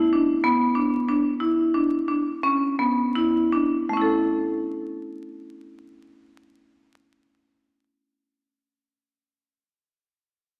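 Restless and shimmering, this short contemporary instrumental in 5/4 is carried by a single marimba struck with hard mallets, its arpeggios sitting up front with a bright, woody bite from the rosewood bars. The opening passage slows down over its first 3.9 seconds, moving from a Bmadd11 chord to a resolution on A, while a wet recital-hall reverb lends the bars an airy bloom and vinyl crackle adds a worn texture beneath.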